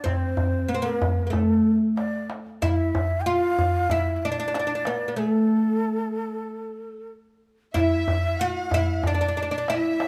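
A straight 4/4 pulse at 94 BPM from a deep, clay-shelled darbuka drives this passionate, stately Arabic maqam ensemble fragment in A maqam bayati, where a bright, woody fretless oud carries the melody up front while a breathy, tongued, unsteady ney with vibrato traces a second line above it, a break arrives at 5.2 s, and a soft-attacked, floating bowed violin section joins the second line at 7.7 s, the ensemble set in a recital hall reverb.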